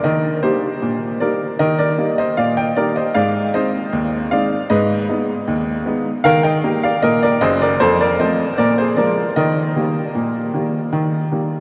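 A clear, woody upright piano plays solo ragtime in a lively, cheerful mood, set in a straight two-beat metre and sitting up front in the mix. Over about 11.6 seconds of this cut from a longer piece, the harmony moves from Eb to Ab, darkens briefly on Ab minor, then returns home through F7 and Bb7. A huge, wet reverb places the piano in a vast, echoing space, while vinyl crackle adds a vintage patina.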